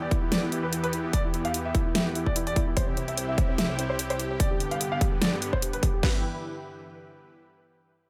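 A light reverb sits over this short, chaotic cut from a longer piece of heavy wobble dubstep in E minor at 147 BPM, felt in half-time with a touch of swing on the sixteenths, moving from Em through C and G before returning to Em at 6.0 seconds. Two overdriven electronic drum kits, re-recorded in a small room and placed up front, carry the weight: one with a punchy kick, deep snare and crash cymbal, the other with a huge snare and bright hi-hats. Beneath them a lush, detuned sawtooth pad holds sustained chords with sidechain pumping, while a dark, mellow baby grand piano plays the melody through a delay.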